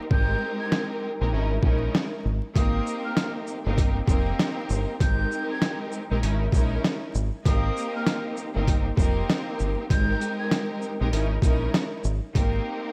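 Soulful and warm, this short boom-bap hip-hop excerpt rolls at 98 BPM with a swung 16th feel, cycling through Abmaj9, Dbm6/Ab and Cm7 over a bed of vinyl crackle in a dry room. Up front, a lush, bowed string section with bright vibrato plays the accompaniment through cassette-tape coloring, while a deep, round fingered electric bass holds the low end and a gritty, pitched-down sampler drum kit punches with a thumpy kick, medium-tuned snare, hi-hat and shaker. Set back in the mix, a breathy jazz flute carries the high melody with a soft attack, unsteady vibrato and delay until 10.7 seconds.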